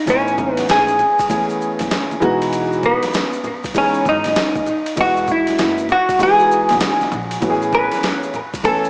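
A vintage hollow-body jazz guitar opens at 0.0 s, clean and hollow in tone, carrying the melody up front through analog chorus and tape echo, before the rest of the band arrives at 0.1 s in this cool, warm jazz-hop excerpt at 98 BPM with a swung sixteenth-note feel in A lydian. Beneath it, a dark grand piano supplies mellow, intimate accompaniment with audible action noise, bathed in a lush chorus. A pizzicato upright bass adds a woody, thumpy low end and drops out at 7.9 s, while a gritty, compressed boom bap kit of kick, snare, hi-hat and ride sits underneath, re-recorded in a large room. Maracas and congas, bright and saturated with hard hands, stay in the background. The harmony moves from Amaj9 to Emaj9 at 2.2 s and back to Amaj9, and a wet plate reverb with small room ambience gives the whole mix a dreamy, small-speaker character.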